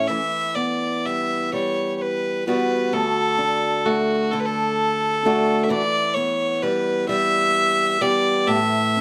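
Mournful and haunting, this fragment of a Celtic slow air in a free, rubato 6/8 sets a single bowed fiddle, biting and nasal with light vibrato, over a bright, boxy fingerpicked archtop guitar whose fresh strings let slip the odd finger squeak, both sitting up front in a small room that adds a moderate touch of reverb.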